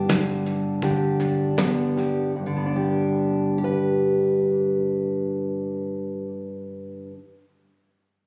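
A fingerpicked steel-string acoustic guitar opens this short indie folk cut from a longer piece, its full-bodied jumbo tone sitting up front and ringing across a range from G2 to B4. A soft brush drum kit joins almost at once, with a fat snare and tight kick carrying a dark, smooth, rolled-off top, and the opening passage slows down before the drums fall away at 2.1 s. A new section begins at 2.4 s, leaving the guitar to carry the accompaniment alone until it stops at 7.2 s. The mood is uplifting and anthemic, pointing toward a building arrangement in a straight 4/4 feel. Captured on a phone in the room, the sound gains light studio reverb and compression.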